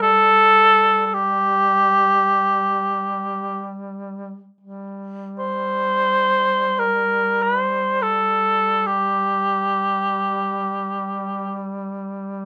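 A warm, vibrato-laden cor anglais sings a solemn, mournful Caucasian lament in free time and G minor, up front in classical style, over a quiet, mellow duduk drone on G3 with folk-style vibrato; the opening passage returns at 4.6 seconds and the cor anglais falls silent at 11.6 seconds, leaving the drone to close this short cut from a longer piece, in a rough home-demo mix with moderate studio reverb.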